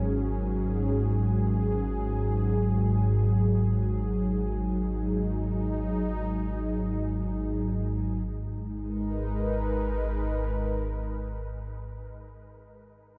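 Unsettling and dark, this brief dark ambient drone in G# minor drifts in free time, as a deep, ominous rumbling drone built from wave-folded triangle and sawtooth tones sits up front with its own reverb beneath an airy, detuned sawtooth pad with a noise layer and chorus that sustains chords moving from F#/G# to G# minor at 8.3 seconds, all within a dark, lightly reverberant production.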